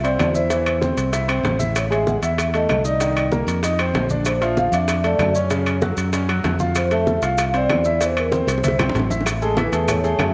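Afro-Cuban jazz with a danceable, sophisticated feel, this clip cut from a longer piece moves in a straight four. A vibraphone played with soft mallets carries the melody, its dark, smooth tone shimmering with fast motor vibrato. A clear, intimate baby grand piano sits up front in accompaniment, with audible action noise and long sustain, while a fingered electric bass, direct and up front, holds down the low end. The percussion bed blends low-tuned, thick-skinned congas, ringing metal-shell timbales with a vintage, band-limited edge, grainy close maracas, and, from 0.2 seconds, tight high-tuned bongos and very quiet woody claves. The harmony moves through chords such as Am, Cm7, Bbmaj7 and Fmaj7, and a drum fill from 8.5 seconds leads into a brief new section opening on Amaj9 at 9.3 seconds, all set in a moderate echo-chamber reverb.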